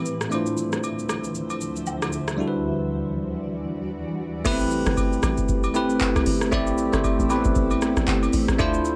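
A bell-like tine electric piano sits up front in this deep, late-night amapiano piece, its bright, clean chords colored by a phaser and a low-pass filter as they move from Dm9 to Em9 and settle on Am9. Beneath it, a granular cloud pad holds blurred, detuned chords that evolve and swell in with a slow attack, pumping against the beat and softened by its own reverb and a low-pass filter. A booming analog drum machine drives the swung groove with a deep kick, metallic hi-hats, handclaps, rim clicks, shaker and crash cymbal, all given an overdriven edge and the feel of a small room. Agogo bells and woodblock add a vintage, band-limited acoustic texture in the background. At 4.5 seconds the drop arrives with a tight log drum bass whose punchy, fast-attack notes decay into a mellow tail. The passage is cut from a longer piece and carries a light reverb overall.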